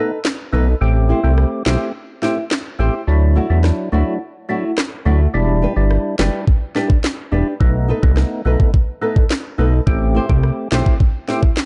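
A fat, thick analog bass with a detuned sawtooth tone and filter sweep sits up front in this tough, sultry dancehall excerpt at 106 BPM, with a knocking kick, sharp snare, rim click and handclaps from an electronic island pop kit that was re-recorded in a large room. A lightly overdriven tonewheel organ with third-harmonic percussion, vibrato and a slow rotary speaker adds accompaniment, while a small, dark nylon-string guitar plays fingerpicked arpeggios with audible finger squeak over chords moving from B7 through Am7, Dadd9 and Em7. The opening break runs to 5.3 seconds and the kick drops out until 6.5 seconds, all in a dry, dark, warm mix.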